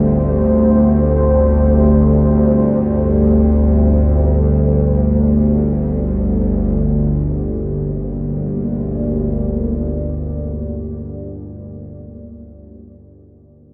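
In free time, this unsettling, desolate dark ambient drone in G minor sets a string-like, tense bowed-like drone low and up front, shimmering with vibrato and a ring-modulated edge beneath a deep, moody pad of detuned sustained chords thickened by chorus. The harmony holds on Gsus2 before darkening to Gm at 6.8 s, and both parts fade into the long tails of their slow releases by about 11.7 s. A huge, wet reverb and the warbling pitch drift of worn cassette tape wash over this brief excerpt from a longer piece.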